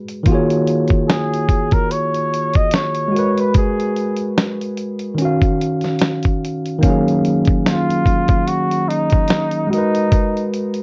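A clean tine electric piano opens at 0.0 s with Ebm11 and Abm9 voicings through a combo amp and cassette tape. A gritty, compressed sampler-style drum kit with a thumpy kick and medium-tuned snare joins at 0.1 s in an unhurried 73 BPM swung lo-fi hip hop groove in Eb minor. From 1.1 s a bucket-muted trumpet carries a veiled, breathy jazz solo with scooped notes and light vibrato, and the whole recording sits in moderate reverb on worn, warbling old tape whose pitch drift underlines the nostalgic, melancholic mood of this short cut from a longer piece.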